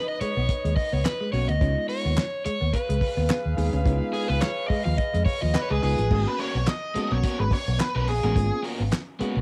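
A swung 16th-note funk groove at 107 BPM in 4/4 drives this sly cut, with a damped 70s drum kit laying down a fat snare, tight kick and dark cymbals while a round, foam-muted electric bass sits punchy and up front, joined from 1.1 seconds by crisp, close group handclaps. In G# dorian over G#madd11 and C#9 chords, a crunchy overdriven guitar takes a solo through the first 6.1 seconds as a mellow, clean guitar riff hums in the background, a bell-like tine electric piano adds bright stabs, and a vibrato-rich horn section plays a second line with analog delay until 5.8 seconds. At 5.5 seconds a fuzzy octave lead guitar pushes forward with a distorted melody, shortly before the harmony settles on G#m11 at 6.1 seconds, all wrapped in the intimacy of a home cassette recording.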